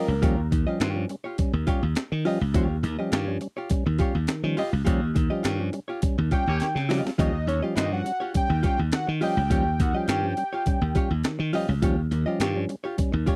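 A straight 4/4 funk groove at 103 BPM in Eb mixolydian rides on a compressed, sampler-style breakbeat kit with thumpy kick, high-tuned snare, hi-hat and handclaps, locked together up front with a growly, glassy slap bass. A clean hollow-body archtop guitar accompanies while a tonewheel organ with key click through a stopped rotary speaker adds stabs over an Eb9 chord. A fat, nasal analog lead with chorus, detuned sawtooth and square waves, a sub octave and a filter sweep carries the melody, sounding briefly at the start and returning at 6.3 seconds, where a vintage horn section with slapback echo adds a short second line during a band accent and drum fill, all in a dry, close 1970s-style studio sound with a gritty, energetic mood.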